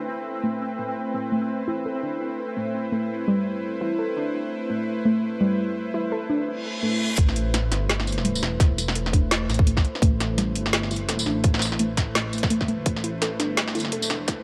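Cinematic and spacious, this half-time drum and bass excerpt opens on a nasal, string-like drone holding an Amadd9 chord, a bright pulsing gated texture and a warbly, lo-fi pluck whose arpeggios carry a filter sweep through the first 7.2 seconds. A reverse cymbal and riser leads into the second half, where a deep, rumbling detuned saw bass, a tight electronic kick and an up-front kit with a woody snare, metallic hats and tambourine drive a build-up. A lush hall reverb and a dark production frame the whole piece.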